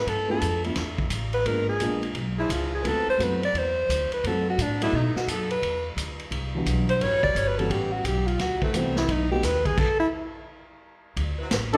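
Heard through a reverberant recital hall, this swinging, brassy big band jazz fragment features an up-front alto saxophone soloing with vibrato over a dark, mellow grand piano, a woody pizzicato upright bass, a vintage drum kit with dark cymbals and a punchy kick, and a distant, roomy saxophone section holding sustained chords. The harmony moves through rich dominant and diminished chords before a stop-time break at 9.8 s, after which the alto stops at 10.1 s while bass and drums carry on. At 11.7 s a trumpet section with light vibrato and a close-miked trombone section on a second line come in just as the fragment cuts off.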